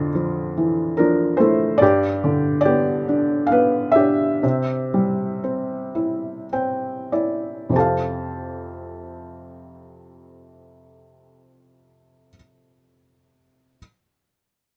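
A felt-muted upright piano plays alone in this calm, lyrical classical excerpt in F major, drifting in 3/4 with a rubato feel between 48 and 72 BPM and tuned to A4 = 439 Hz, its mellow, intimate, short-sustained tone sitting up front under close, detailed microphones and light reverb as the pace slows from 1.8 seconds and a soft piano fill arrives at 5.9 seconds before settling onto a gentle new passage at 7.7 seconds.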